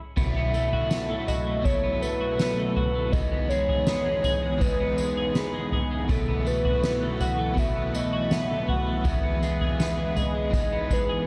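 Dream pop at 81 BPM in B mixolydian, dreamy and blissful, in this cut from a longer piece: a hollow, woody clarinet-like synth lead carries the melody with chorus, vibrato and tape echo over warm, clean twelve-string electric guitar arpeggios drenched in lush chorus and tape echo, a bright, overdriven electric guitar with tremolo sits in the background, and a thick, detuned unison pad with chorus and phaser swells in at 0.7 s to hold sustained B7sus4 and Emaj7 chords, all driven by an up-front soft-mallet drum kit with a boomy kick, fat snare, toms, tambourine and crash, in a dark, warm production with light reverb, small-room ambience and lossy compression artefacts.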